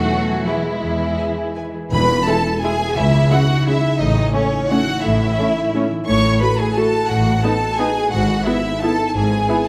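Festive and sweeping, this short excerpt of an orchestral ballroom waltz in E major sways in 3/4 at a rubato 154-189 BPM, with a lush, vibrato-rich violin section carrying the melody over a second smooth violin line, focused violas, background cellos, distant bowed double basses, a ringing fingerpicked harp in arpeggios, round soft-mallet timpani that fall silent at 2.4 seconds, and a very quiet, dark French horn section holding sustained chords from 2.3 seconds, all set in a recital hall reverb as the harmony moves from E through C#m and A to B7/A and E/G#.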